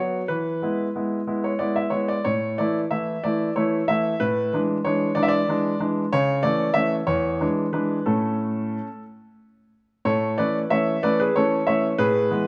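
A playful, elegant classical-period piano sonatina in A major, taken from a longer piece, moves at 62 BPM in 6/8, with a solo baby grand carrying the whole passage from 0.0 to 12.5 s across a range from E2 to E5. The piano sits up front with a brilliant, open tone and long sustain, captured by close, detailed microphones and framed by a moderate recital hall reverb. Its harmony settles around E and A chords, closing back on A at 8.1 s before the opening section returns at 10.1 s.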